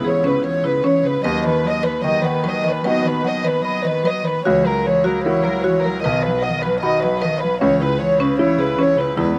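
This hopeful, intimate neoclassical excerpt for piano and strings opens with all four parts sounding together at 76 BPM in 4/4, in B major with a rubato feel. A chamber violin section carries the melody up front, bowed sul tasto with light vibrato and a soft attack. A single dark-toned cello plays a second line beneath it in the same close, hushed manner. A smooth, vintage grand piano supplies the accompaniment, and a buzzing marimba struck with hard mallets adds woody, percussive arpeggios with a dry, boxy character; both piano and marimba carry a slapback echo. The harmony moves from C#m7 through B/D# and F#7/C# to B before returning to C#m7 at 7.6 seconds, all recorded outdoors with light reverb, and the marimba stops at 9.3 seconds, just before the strings and piano end at 9.4.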